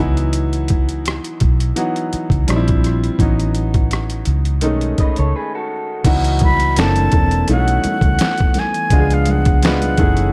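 A light 16th-note swing at 84 BPM in 4/4 sets up this smooth, sultry neo-soul R&B excerpt in C# minor, carried by a gritty, pitched-down boom bap drum kit with a thumpy kick, medium-tuned snare, rim clicks, finger snaps, hi-hat and crash sitting up front. A dark, foam-muted fingered electric bass holds the low end with a round, punchy tone, while a clear, natural grand piano opens with a brief fill and voices rich chords such as C#m11, A69 and B13. At 5.0 seconds a slightly broken-up, lo-fi electric guitar through a small old amp adds a short picked second line that carries into a break. From 6.1 seconds a hollow pipe organ on stopped flute stops with tremulant lays down very quiet sustained chords, joined by soft-handed, ringing congas. A breathy, close-miked concert flute with a straight tone and soft attack carries the melody from 6.4 seconds over F#7alt, B9sus4 and C#7b9 harmonies, all framed by light reverb and a small room ambience.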